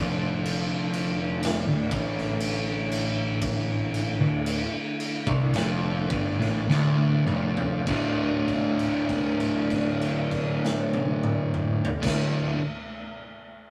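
A rough, tube-saturated rehearsal-room sound with a short booth ambience frames this sludgy, hypnotic stretch of stoner and doom metal, cut from a longer piece, as it slows down over its first 7.9 seconds. Up front, a double-tracked fuzz guitar carries the riff over Dm, with a punchy, gritty garage drum kit entering at 0.5 seconds, while a growly fuzz bass holds down the low end and a lightly overdriven tonewheel organ with key click and slow rotary speaker holds sustained chords, both in the background. A drum fill from 6.7 seconds leads into a held D5 that rings from 7.9 seconds.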